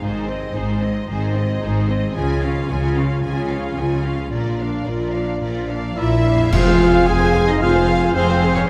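A lush orchestral sound in a wet scoring-stage reverb opens this short excerpt of a heroic adventure film score in F minor, moving at 112 BPM in a straight 4/4 with a swashbuckling, determined mood. A rich, focused violin section carries the melody over a softer second violin line, close viola accompaniment, mellow French horn chords, very quiet ringing harp arpeggios, and a smooth cello and distant double bass foundation, as the chords pass from Ab through Db and Bb. At 6.0 seconds a clear, punchy oboe and mellow trumpet stabs arrive, and at 6.5 seconds the music lands on F minor with a bright clarinet, hollow flute, tight trombone chords, a dry timpani hit and a bright accent of clash cymbals and concert bass drum.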